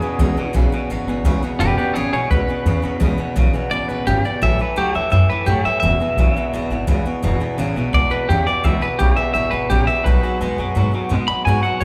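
A rollicking, retro rockabilly band bursts in together as if playing live in one room, with a woody, thumpy upright bass up front and a bright, twangy electric guitar carrying the melody through springy reverb. Underneath, a second clean electric guitar drives a low riff, also touched by spring reverb, while a full-bodied steel-string acoustic guitar fills in the picked accompaniment. The large studio room adds a moderate glow as the chords move from E6 to A6 at 4.4 seconds, back to E6, then up to B6 near the end of this excerpt cut from a longer piece.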